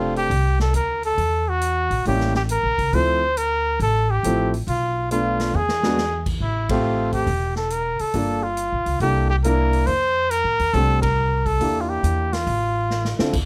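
Lightly reverberant and natural in tone, this swinging, sophisticated small-group jazz excerpt in the swing-and-bop style features a warm trumpet singing the melody up front with vibrato, soft attacks and scooped notes. Behind it, a baby grand piano comps over rich, shifting chords, while a woody, growly pizzicato upright bass sits close by. A big-room drum kit with a punchy kick and ride, hi-hat and crash cymbals joins at 0.2 seconds, drops a fill around 5.5 seconds and lands a full-band accent at 6.6 seconds.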